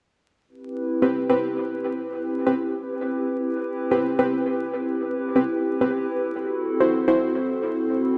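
A lush, wet hall reverb and a layer of vinyl crackle surround this dark, frenetic drum and bass excerpt cut from a longer piece. A warbly, tape-like pad enters at 0.6 seconds, holding sustained chords with a slow attack and long release; its detuned square and triangle tones, thickened by chorus and its own reverb, sound nostalgic and lo-fi. At 1.0 seconds a band-passed chord stab joins, its nasal, vintage sawtooth tone bright and detuned over a sub octave, with fast-attack hits that decay into chorus and dub echo. Both parts sit up front, the pad's murky haze set against the stab's sharper edge. The harmony rests on Cmaj7 before moving to Am6 at 6.3 seconds, lending the passage a wistful, shadowy colour.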